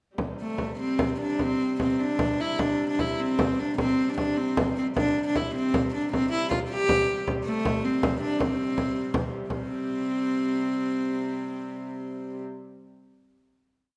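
A moderate recital hall reverb surrounds this short, complete medieval dance, giving it a festive yet ancient character in a straight 6/8 that steadily speeds up until about 11.6 seconds. Up front, a viola da gamba carries a modal melody with ornaments, its bowed, fretted tone rich and ringing, shaded by light vibrato, a soft attack and an airy, intimate closeness. Beneath it, a hurdy-gurdy sustains a dark, woody drone with a smooth top, sitting low in the mix from the opening moments to the end. A deep, large frame drum, close and dry, played with hard hands, lays down an evenly spread pattern. The dance settles onto a final chord from 9.5 seconds, the drum dropping out shortly after at 9.7 seconds, while the gamba and drone ring on together to the close.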